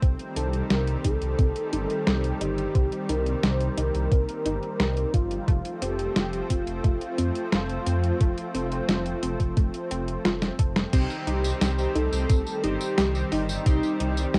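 Synthwave at 88 BPM in C dorian, driving and nocturnal, with an overdriven, thumpy electronic kick up front alongside a detuned 8-bit drum machine of crash, hi-hat, tape-toned snare and tambourine, while a deep, rumbling detuned saw bass with tube saturation holds down the low end under a lush, chorused unison pad with sidechain pumping. A gritty, 12-bit unison pluck plays arpeggios in the background through analog delay and a filter sweep, and from 0.4 seconds a thick, bold unison lead carries the melody with vibrato, cassette tape colour and delay over the Cm and F chords. After a drum fill, a glossy, retro chorused polysynth adds stabs from 10.9 seconds in this fragment cut from a longer piece, all heard in light reverb with the character of a home cassette recording.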